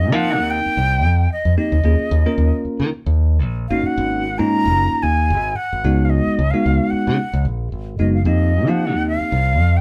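A lightly swung 4/4 groove drives this nocturnal jazz fragment, where a bright, up-front fingered electric bass anchors the floating suspended chords, a bell-like, clean tine electric piano comps alongside, and an airy jazz flute with soft attack and expressive vibrato carries the melody, all set in a moderate studio reverb that suggests a band playing live in one room.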